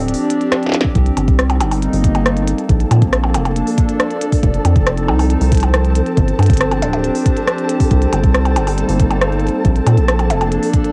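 Intricate and melancholic, this IDM excerpt moves at 138 BPM in C dorian, with a hollow, flute-like pad carrying sustained chords through chorus and vintage 12-bit sampler grit while a rubbery, bouncy square bass sits dark and up front. A glitchy drum kit of clicky hats, percussion blips, a rim click and a tiny snare enters at 0.1 seconds and plays a drum fill from 0.5 seconds, joined by a deep electronic kick from 0.8 seconds, both colored by cassette tape. From 1.9 seconds a flickering, grainy granular texture drifts in with its own reverb, over chords cycling from G7sus4 through Cm7, Bbmaj7 and F7, all heard as a lo-fi home cassette recording in a lightly reverberant space.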